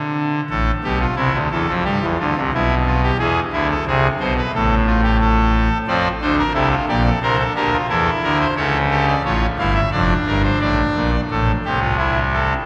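Serious and driving, this short excerpt from a longer piece is a baroque-style three-part fugue for solo pipe organ in straight 4/4 at 89 BPM, tuned to A4 = 444 Hz. The organ speaks through its trumpet stop, giving a brassy, bright tone with baroque voicing that sits up front, and it covers a span from F1 to F5. A long, wet cathedral reverb, ringing for about 5.5 seconds, surrounds the instrument with a vast sense of space. The harmony moves through A minor, G and E7, pauses on an unharmonized moment, then passes through D minor, C, A7 over C# and D minor over F before settling back on A minor at 11.3 seconds, where a brief new section begins. The organ plays alone from the start until it stops at 12.5 seconds.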